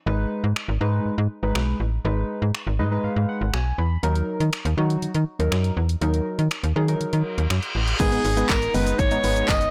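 Driving and bittersweet, this dance-pop excerpt runs at 121 BPM in G# minor, with soft, round electric-piano-like synth keys adding chorus and a sidechain pump over a snappy, metallic FM slap bass and a punchy, overdriven house kit of kick, bright hi-hats, handclaps, finger snaps, shaker and crash. The keys play a fill from 2.5 to 4.0 seconds as the harmony moves from G#m to D#m, and a reverse cymbal rises from 7.2 seconds into a new section at 8.0 seconds. There a clear alto saxophone with vibrato and dub echo takes the melody, joined by a phased supersaw swell in the background, a faint hollow square pluck playing arpeggios and a jingly, distant tambourine, all within a light reverb and a blown-out, overdriven sound.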